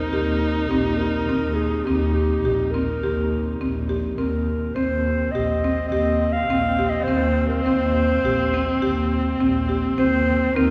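Shimmering and restless, this contemporary chamber piece in 5/4 at 104 BPM in Eb major sets a mellow, up-front clarinet melody over a dark, bowed viola with vibrato and portamento, buzzing hardwood marimba arpeggios struck with hard mallets, and a rich, gut-string double bass bowed with light vibrato, all cut from a longer piece and bathed in a cathedral reverb of a church or concert hall.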